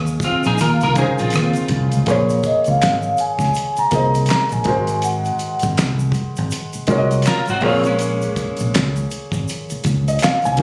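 Captured on a phone in the room, this short cut from a longer neo-soul and R&B piece carries light studio reverb and compression, giving it a soulful, late-night mood. At a relaxed 81 BPM in 4/4 with a swung sixteenth-note lilt, it sits in Bb minor and moves through Eb9sus4, Bbm9 and Ab9 chords. An upright piano with woody tone and audible action noise sits up front beside a punchy fingered electric bass. A damped 70s drum kit adds a fat snare, tight kick, hi-hat, rim clicks and handclaps, with tube shaker and finger snaps tucked in the background. A clean, dark electric guitar with ensemble chorus plays a picked, scooped second line in two brief spots. The melody comes from a mellow vibraphone struck with soft mallets, entering at 2.5 seconds with medium motor vibrato and tape echo and ringing until 5.7 seconds.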